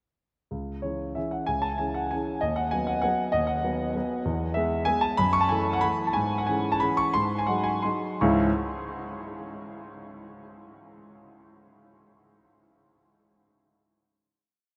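This complete classical piano waltz in C# minor feels nostalgic and elegant, moving in 3/4 with a flexible rubato between 144 and 210 BPM. A solo grand piano carries the whole piece, setting a single-line melody over a waltz bass across a range from C#2 to C#6. Its tone is warm and present, with long sustain, and it sits up front in a vast, echoing space whose huge, wet reverb lingers for about 7.3 seconds. The harmony moves from C#m through B/D#, E, F#m7 and C#m/G# to G#7. The tempo slows from 5.7 seconds before a closing C#m chord at 8.2 seconds rings out into the hall.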